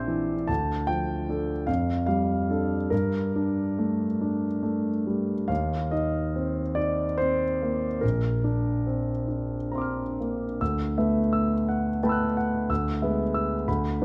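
A concert grand piano, intimate and polished with deep bass, long sustain and audible action noise up front, carries this luminous, serene impressionist classical excerpt alone in a rubato 6/8 at 43-63 BPM in dotted quarters, drifting through chords such as Dm, F69 and Gmadd9 in Bb major before shifting into D major at 10.6 s, all captured by close, detailed microphones in a moderate scoring stage reverb.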